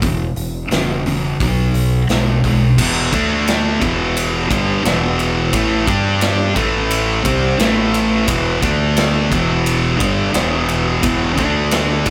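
A thick, double-tracked fuzz guitar sits up front with a bright, distorted riff built on E5, D5, A5 and G5 power chords, backed by a growling, overdriven fingered bass with a punchy attack and a big acoustic rock kit with a medium-tuned snare, tight kick and bright cymbals, all in a straight 4/4 swaggering, raunchy blues rock power trio and southern rock groove captured by a band playing live in one room with light reverb, cut from a longer piece.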